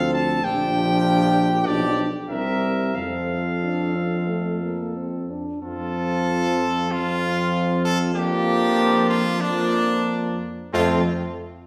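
A classical brass quintet plays together from the first moment in F major, a noble, warm-hearted passage taken from a longer piece, moving in a flexible, rubato 4/4 around 88-99 BPM. The lead trumpet carries the melody up front with a distant, roomy tone, a second trumpet sings a lower line beneath it, the French horn adds mellow accompaniment with light vibrato, the smooth-topped trombone sits in the background, and the clear tuba anchors the bass. A new phrase begins at 5.6 seconds, the harmony settles back home on F, and the ensemble rings in the generous reverb of a church or concert hall.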